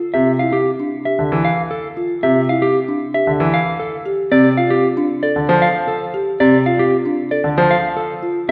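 Minimalist classical pattern music in 4/4 at 115 BPM, this brief fragment feels urgent yet meditative as a woody, round folk marimba struck with soft mallets spins arpeggios from the start. A dark, clean electric guitar carries the melody up front, while a brilliant grand piano plays low accompaniment, the harmony moving from D7sus2 to Gsus2 at 3.5 seconds and landing on F at 7.7 seconds. The parts sit in a concert hall reverb with a lingering 1.8-second tail.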